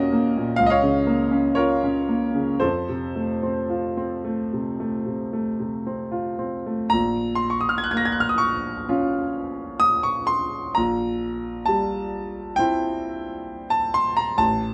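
Mournful and melancholic, this short cut from a longer romantic nocturne sets a clear, smooth, vintage-toned grand piano up front in light reverb, playing alone in Bb minor at a slow, rubato 55-68 BPM in 4/4, ranging from A1 to Bb6 as it moves from Ebm7 through F before settling on Bbm at 6.9 seconds and shifting to C7/Bb at 10.8 seconds.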